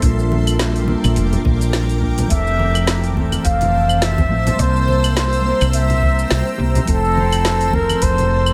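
Blissful and sunny, this short sunset chillout excerpt in F major moves at 105 BPM with a gentle 16th-note swing, built on a round, woody fretless bass up front, a deep analog kick in the background, a smooth R&B kit of claves, hi-hat, shaker and woody snare, very quiet hard-handed congas, a dark, clean fingered electric guitar with shimmer reverb, and an ethereal detuned pad drenched in chorus and phaser, before a mellow, distant flugelhorn takes the solo melody at 2.3 seconds with delay over chords moving from Bb6 through Fmaj7 and C7.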